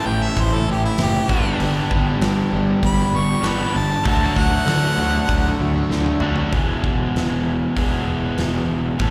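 A clear, close-miked harmonica leads this confident, sunny classic rock excerpt, playing a pop-style solo with light vibrato, scooped notes and a slapback echo until it drops out at 5.6 seconds. Beneath it, a crunchy overdriven guitar sits up front with a riff that carries through to the end, while a second, brighter and compressed overdriven guitar with its own slapback echo plays a riff further back in the mix. A warm, fuzz-laden picked bass drives the low end, and a huge arena drum kit brings a fat snare, a punchy kick, hi-hat and toms in a straight 4/4 feel. The harmony moves through A, G and D. A drum fill at 5.9 seconds leads into a new section at 6.5 seconds that lands on E, where the background guitar stops. The whole performance sounds like a live gig heard through the venue's PA, with small room ambience and recital hall reverb around it.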